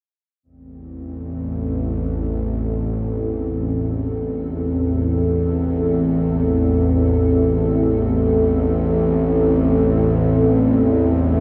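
Unsettling and dark, this dark ambient drone floats in free time around A minor, tuned slightly sharp to A4 = 441 Hz, and is cut from a longer piece. An analog pad enters at 0.4 s, holding a sustained A minor chord in the middle register with a deep, moody tone built from detuned square, sawtooth and triangle waves, a sub octave and wave-folding, shaped by chorus, slow attacks and long releases. At 0.8 s a bowed-like drone joins far below, sitting up front with a string-like, tense sawtooth sound: detuned unison voices, a noise layer, vibrato and its own built-in reverb give it a bright, restless edge. Both parts sustain together until the clip ends at 11.4 s. The whole recording is bathed in a huge, wet reverb with a 7.8-second decay, placing the sound in a vast, echoing space.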